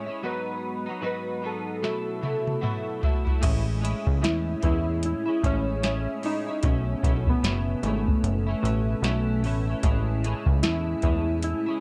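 A hazy, laid-back fragment of bedroom indie pop opens on warbly, detuned lo-fi synth keys carrying a nostalgic melody through subtle chorus and analog delay, above a clean, compressed twelve-string electric guitar colored by analog chorus and pitch drift. A soft vintage rhythm box enters with a drum fill at 1.8 seconds, its deep kick, crisp snare and metallic hats sitting up front in a gently swung groove, and a punchy, funky analog bass with a filter sweep joins at 3.4 seconds. From 4.6 seconds a granular cloud pad drifts in the background with blurred, evolving sustained chords, and the mix has a dark character with light reverb.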